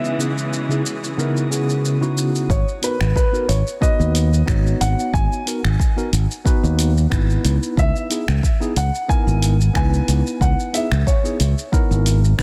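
This relaxed, wistful sunset chillout excerpt opens with a dark, boxy baby grand carrying the melody through delay, with audible action noise, over a clean tine electric piano with medium tremolo and delay, while lush bowed strings sit close and a glassy, drifting harmonics texture hovers in the background beside finger snaps, hi-hat and shaker from a tape-warm deep house kit. At 2.5 seconds the strings and glass texture stop, and a bright, growly fingered electric bass and a deep, layered electronic kick enter up front. The piece moves between C#m7 and G#m7 under a light reverb and a dense, heavily limited modern master.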